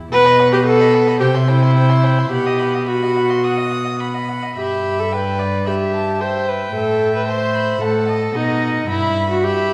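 From 0.1 s a period-style string quartet plays this restless, stormy excerpt of a quick classical-period movement in E minor, tuned to A4 = 439 Hz, at 110 BPM in 4/4 with rubato: a reedy, gut-string first violin carries the high melody, a dark, nasal second violin sits distant beneath it, and the smooth-topped viola accompaniment and rich cello bass stand up front, louder than both violins, with the quartet heard from further back in a wet scoring-stage reverb as the harmony passes from B and C through E minor over G and A minor to B7 over A before settling on E minor over G at 8.9 s.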